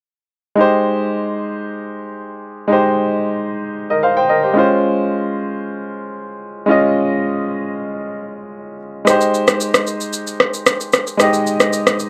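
A clear, up-front grand piano, bathed in plate reverb and set in a light overall reverb, opens this breezy, romantic afrobeats excerpt cut from a longer piece. The tempo sits at 113 BPM in a straight 4/4, in Ab major, with the piano carrying the accompaniment from 0.6 seconds across a range of Ab3 to G5. Its chords move from Abmaj7 to Dbmaj7 at 4.6 seconds, giving the passage a gently lush, unhurried glow. At 9.1 seconds, as the harmony returns to Abmaj7, an electronic rim click and shaker enter close to the listener, their produced sound roughened by overdrive and colored by re-recording in a small room. Both parts play on together until the passage ends at 12.1 seconds.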